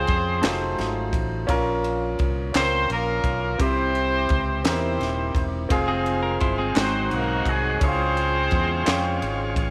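A light, small-room reverb gives this short cut from a longer slow gospel piece a close, intimate feel, with the horn section and grand piano sitting up front. At 57 BPM in 6/8 and F harmonic minor, the mood is soulful and fervent, moving through chords such as F7b9, Bbm, C, Fm, Ab7 and Db. A clear horn section carries the melody with light vibrato and octave doubling over a warm grand piano with audible action noise and long sustain, while a round, amped fingered electric bass anchors the low end. A crisp fusion drum kit of punchy kick, high-tuned snare and bright ride cymbal pumps in the room, joined by vintage, band-limited group handclaps in the background. At 5.7 seconds a full, shouting tonewheel organ enters with sustained chords through a lightly overdriven slow rotary speaker, and a clean, picked, compressed electric guitar adds a brief second line from 5.9 to 6.9 seconds.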